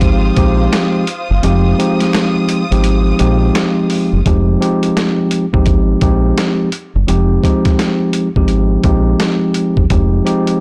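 Tough and gritty, this boom-bap hip-hop excerpt swings over a compressed, pitched-down sampler kit with a thumpy kick (muted from 1.4 to 4.3 seconds), a round, punchy fingered bass driven through tube saturation, and a mellow, clean tine electric piano on an Fm7, while lush bowed strings and a very quiet finger snap drop out by 4.2 seconds, all in a dry, blown-out, overdriven mix.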